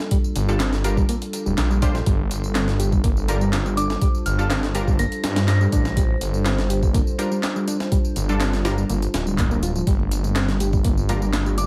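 A compressed, thumpy sampler-style breakbeat kit with a high-tuned snare drives this gritty, raw 123 BPM breaks excerpt in G minor, sitting on a Gm7 chord. A menacing detuned saw bass and a punchy orchestra-hit-like stab with reverb and tape echo join it, along with overdriven electronic tambourine and handclaps. Underneath run a moody analog pad pumping through chorus and phaser and a reedy electric piano riff with tape echo in the background, all over a bed of vinyl crackle. A pure FM bell melody with tremolo and an old-record tint appears from 3.8 to 6.2 seconds, and very quiet congas enter at 9.9 seconds.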